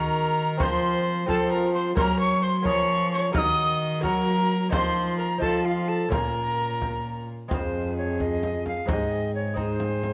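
Solemn and courtly, this excerpt of a renaissance-style consort dance in 6/8 sets an airy, wooden alto recorder melody, expressive with vibrato and a tongued chiff, over a warm gut-string viola second line and a delicate, fingerpicked lute with double strings. A dark, nasal period-style cello sits up front on the bass, and a deep frame drum played with hard hands joins at 0.6 s, all within a moderate stone room reverb. A second section begins at 7.5 s.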